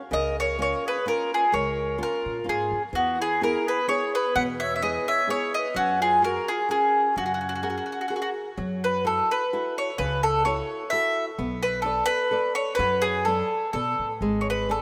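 A lush hall reverb surrounds this rough home demo mix, a lively, sunny Italian folk serenade cut from a longer piece. It moves at 128 BPM in a swung 3/4, starting in F# major and turning to F# minor at 8.6 seconds. The picked mandolin carries the melody up front, its double strings giving a warm, woody tone. Beneath it, a fingerpicked flamenco guitar plays warm accompaniment, and a pizzicato upright bass on gut strings adds a dark, thumpy foundation. A clear clarinet with a soft attack and a vintage, classical character plays a second line until 8.3 seconds. The chords pass through F#add9 before shifting to F#m7 and Bm7.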